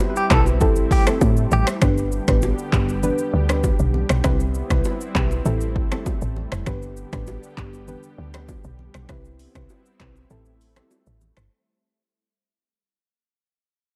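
Afrobeats with a sunny, breezy mood, cut from a longer piece and fading out over its whole length, built on an up-front deep house drum kit with a punchy, overdriven kick, snaps, claps, rim clicks, hi-hat and shaker, and a woody, percussive log drum bass, while very quiet bongos and congas sit in a live room underneath. A clean, twangy electric guitar plays a brief bright melody from 0.2 to 1.7 seconds over a soft, round chorused pluck and a lush, warbling unison pad that pumps with sidechain as the chords cycle through Cmaj7, Am7 and G. The dark, digital ambience gives way to a break at 10.3 seconds.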